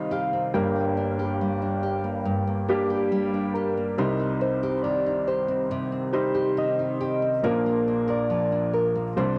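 Longing and melancholic, this brief pop ballad excerpt drifts over a slow, straight pulse as a soft, round FM synth lead with a keys-like, fast-attack, decaying tone and a chorus shimmer carries the melody above. An open, long-sustaining baby grand piano sits up front with accompaniment, joined by a dark, fingerpicked classical nylon-string guitar whose arpeggios reveal the occasional finger squeak, all moving through C minor, G minor and B-flat chords. The whole piece has a homemade cassette character, with a soft top end, small-room ambience and a wet spring reverb.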